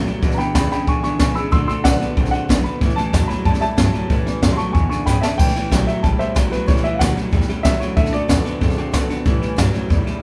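A band playing live in one room fills a large studio with moderate reverb, giving this short cut from a longer rockabilly piece a rowdy, retro energy at 186 BPM in a straight 4/4, centred on A mixolydian. Up front, a jazz kit played with brushes pairs a high-tuned snare with a boomy kick, hi-hat and crash, while a pizzicato upright bass with gut strings sits further back, thumpy and woody. An electric guitar through a small old amp carries the riff with a bright, twangy, slightly broken-up tone. Behind it, a picked dreadnought steel-string acoustic guitar with fresh strings adds full-bodied accompaniment. A warm, polished upright piano takes the melody high in its range, present in the mix until it stops at 9.1 seconds. The chords move through E7, D7 and A7, and a drum fill leads into a second pass of the same phrase at 5.4 seconds.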